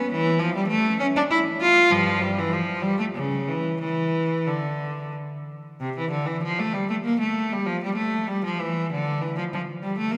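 A single bowed cello opens at once, clear and intense with vibrato and a smooth top, sitting up front as it moves between G2 and F4 in a flowing, dance-like baroque-style suite movement in 3/4, around 89-101 BPM with a rubato feel. The opening phrase returns at 5.8 s, and a wet church reverb with a 3.4-second decay surrounds the lone player throughout this short fragment of a longer piece.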